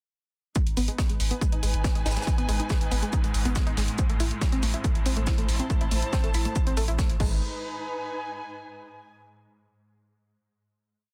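At 0.6 s a driving, relentless peak-time techno groove at 140 BPM in G# minor begins: an overdriven four-on-the-floor electronic kick sits up front, soon joined at 0.7 s by a thick, saturated sub bass rumbling between the kicks, alongside a tape-warm analog drum machine's hats, backbeat and crash and, in the background, an airy acoustic kit playing a looped, edited breakbeat. A round, detuned sawtooth pluck with ring modulation, chorus and digital delay runs a 5-step sequence drifting against the bar under a filter sweep, while dark, distant chamber strings with vibrato shift slowly between G#m and Am, and from 1.8 s a swarming, granular drone warbles in the background. The pluck, sub bass, drone, strings and kit hats pump with sidechain under a densely limited modern master, and the strings hold a final note until 9.1 s.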